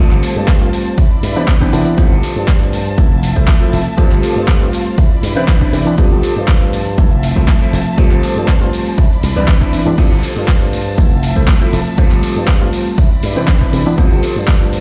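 A slightly swung 16th-note groove at 120 BPM in 4/4 drives this sunny, feel-good filtered disco house passage, cut from a longer piece. A punchy, overdriven analog kick sits up front, with a gritty, compressed sampler-style kit adding crash, handclaps, hi-hat and shaker in a small room. A distant tambourine joins in the background at 10.0 s. A bright, growly slap bass through an envelope filter anchors the low end. A reedy, clean electric piano with phaser and a dark, fingered electric guitar riff, also phased, ride over lush bowed chamber strings with vibrato and vintage 12-bit sampler grit, and sidechain pumping breathes through every part except the kick. In G mixolydian, tuned to A4 = 445 Hz, the harmony cycles through G9sus4, Cmaj9 and Fmaj7, and the mix is fairly dry but sounds as if played on a big sound system in a bare stone room.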